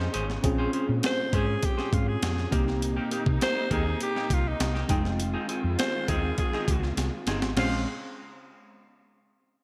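A straight 4/4 groove at 101 BPM drives this slick, urban 1980s jazz-funk pop in Bb dorian, where an overdriven, gritty breakbeat sampler-style kit with a thumpy kick and gated reverb sits up front beside a round, hollow-body fingered bass; a raspy alto saxophone carries the melody with vibrato; a worn, slightly out-of-tune tine electric piano and a dark, clean electric guitar riff both carry lush chorus; warm bowed strings sustain Bbm9, Cm7 and Fm7 chords in the background; and a drum fill at 7.0 s leads into a new section at 7.6 s, all under bright digital production and plate reverb.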